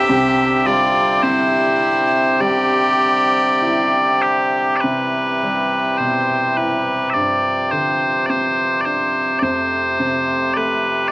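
A light reverb and small-room ambience frame this short cut from a longer Celtic folk slow air in C major, moving at a rubato 52 BPM in 4/4 with a pastoral, tender mood. Loud, bright bagpipes carry the melody up front from start to finish, their piercing, continuous tone ranging from C3 to E5. A rich, earthy fiddle with light vibrato plays a distant bowed second line until 4.2 seconds, while a clear, woody upright piano, slightly detuned with short sustain, provides present accompaniment throughout. A reedy, hollow accordion holds sustained chords in the background. The harmony opens on Cadd9, shifts to Cmaj7 at 4.8 seconds as a new section begins, then passes through G7sus4 before settling on F.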